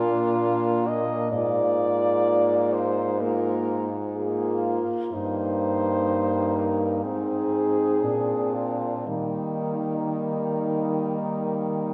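A clear French horn carries the melody up front, its light vibrato and silky top leading this serene, lyrical classical excerpt for horn quartet, played with rubato in 4/4. Beneath it, three horns fill out the harmony: a distant, roomy second line with a gentle vibrato, an accompanying voice with a smooth top, and a warm bass horn placed up front with a touch of vibrato. All four sound together for the full 11.9 seconds. A wet concert hall reverb sets the ensemble further back in the room as the harmony moves from Bb through Eb/G and Ab to settle on Eb.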